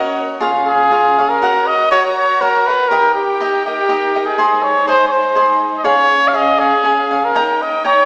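Mariachi-flavored Mexican folk in a lightly swung 3/4 at 121 BPM with rubato, this proud, festive excerpt sets a warm classical-style solo trumpet up front on the melody over crisp picked acoustic cavaquinho and a lush, bowed symphonic violin section holding sustained vibrato chords through a C#, F#, D#, G# progression ending on D#7, all bathed in a church-like recital hall reverb with a small-speaker tone.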